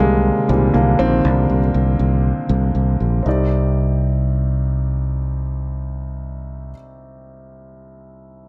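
An intimate concert grand piano carries the accompaniment in this bittersweet, dramatic piano-driven pop excerpt in C minor at 119 BPM in a straight 4/4. Its audible action noise, deep low register and long sustain sit up front over a Cmadd9 chord. A growly, direct fingered electric bass holds the low end until 6.7 seconds, and the piano rings on to 8.5 seconds in a small room with light reverb.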